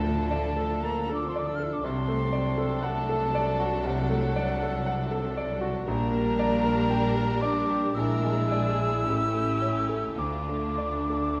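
From the first moment, a bright concert grand piano carries the melody up front in this brooding, passionate romantic movement for piano and orchestra, its brilliant, polished tone reaching down into deep bass, with short sustain. The tempo is slow, around 49-60 BPM in 4/4, with a rubato feel, and the harmony moves from Dm through D7/C, Gm/Bb and Bb7 to A7 before settling back on Dm at 10.2 seconds. In the background, a lush violin section also sings the melody with expressive vibrato, while a second, clear and even violin section and an airy silver concert flute trace second lines from a distance. A dark, woody viola section fills the accompaniment, mellow French horns hold sustained chords with a vintage color, and focused cello and double bass sections ground the bass. A wet recital hall reverb surrounds the ensemble in this passage of about 11.4 seconds, cut from a longer piece.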